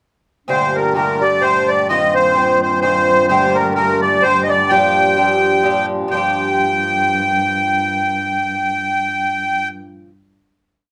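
This short Celtic folk waltz in 3/4 carries a dark yet lively, driving mood, with a gentle swing on the eighth notes. A reedy, sweet accordion sits up front with the melody, its light tremolo tuning giving a shimmer as it spins short motifs into balanced, period-style phrases. Beneath it, an acoustic Irish bouzouki strums steady eighths in open chord shapes, its picked double strings sounding metallic yet mellow. A single muted cello, bowed con sordino, holds a veiled, vibrato-touched drone low in the mix. The harmony leans on minor chords with suspended and added-note colours, and the brief tune settles onto a final chord at 6.1 seconds, with the bouzouki ringing on until 10.2 seconds. A wet studio reverb wraps the trio in its glow.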